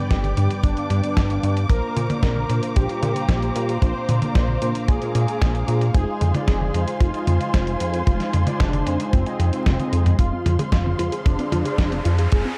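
A straight 4/4 groove at 113 BPM drives this nostalgic, bittersweet italo disco excerpt, anchored by a dry, tight acoustic kick up front and a gritty, compressed sampler-style kit of hi-hat, medium-tuned snare and toms with a tape-warm, large-room character. A glossy, retro chorused synth bass built from pulse and sawtooth waves sits up front, while fat, detuned analog synth brass stabs carry chorus, vibrato and a filter sweep. Above them, a thick, nasal unison lead with a sub octave and delay sings the melody, and a lush, dark symphonic string section holds bowed, expressive chords with a smooth top. The harmony moves from G through Bbadd9 and Fm7 before a drum fill at 9.7 seconds leads into a shift to Fm, where a mellow, warbling lo-fi pluck enters in the background at 10.3 seconds with arpeggios. An electronic riser arrives at 10.9 seconds, all set in light reverb and small-room ambience with vinyl crackle over a dark, warm production.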